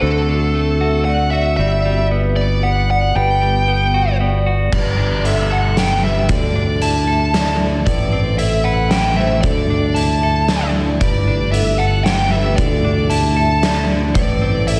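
A hopeful, cinematic post-rock passage in 3/4 at 115 BPM, set in G major and cut from a longer piece, with an up-front bluesy overdriven lead guitar carrying the melody through distortion and slapback echo over a growly, punchy fingered bass, picked clean guitar arpeggios and ringing hard-mallet vibraphone tucked in the background. A very quiet, ethereal pad of detuned sawtooth and triangle tones sustains the chords, moving from D7 and Gmaj7 into a cycle of Gadd9, Dsus2 and Amadd9. At 4.7 seconds an oversized, low-tuned acoustic kit crashes in, saturated and gritty with a punchy kick, filling out a big arena sound in concert-hall reverb.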